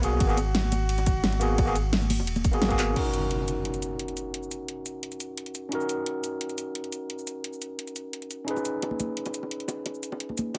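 A punchy, overdriven electronic kick and an up-front pop kit with a fat snare and metallic hats drive this dreamy, lush liquid drum and bass clip. A deep sub bass, soft-handed bongos and congas, a distant, breathy bucket-muted trumpet and the bright, gritty overdriven tine electric piano fill the opening drop, and after a drum fill at 2.8 seconds and an electronic impact at 3.0 seconds, the electric piano carries on through to 10.6 seconds.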